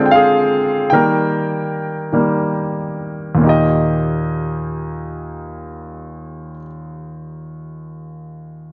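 This pop fragment is romantic and tender, a slow 6/8 in Eb major at roughly 45-53 BPM in dotted quarters, with the tempo easing back over the first 3.4 seconds. A concert grand piano carries the whole accompaniment, ranging from Eb2 to G5. Its sound is bright and up front, with deep bass and short sustain, and it moves from Dm7b5 to Eb inside a moderate echo-chamber reverb.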